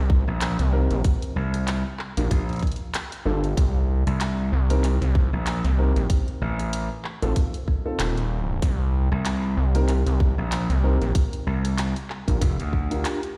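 Glitch hop with a playful, swaggering strut, this excerpt moves at 95 BPM in 4/4 with a swung sixteenth-note feel, set in C dorian. A gritty, saturated synth bass built from sawtooth and sync tones opens at 0.0 seconds and sits up front, joined almost at once by a tight, layered electronic kick and an overdriven slap bass that sounds bright, punchy and amped. A produced drum kit adds handclaps, hi-hat and rim clicks in a small room ambience shared with the kick. From 0.7 seconds a dark, boxy grand piano drops mellow stabs that pump against the beat and trail off into tape echo. The harmony circles through Cm7, Gm7 and F7. The whole mix sounds as if played on a big sound system in a bare stone room, lending it a hard, echoing air.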